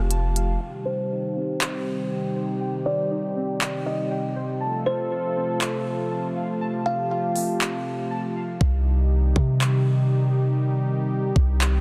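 A deep, boomy 808-style bass opens this melancholic, spacious half-time cloud-rap excerpt, then drops out and returns up front at 8.6 seconds, when the hi-hats of the trap kit fall silent. Alongside it a smooth, detuned sawtooth analog pad holds chorused, sidechain-pumped chords, while warbling, nostalgic lo-fi synth keys trace filtered arpeggios through chorus, phaser and delay, and a woody, bright kalimba carries a ringing melody. The electronic drums bring a knocking kick, crisp hats and handclaps, a filter sweep runs through the first section before a break at 7.6 seconds, and the dense, heavily limited master sits in light digital ambience.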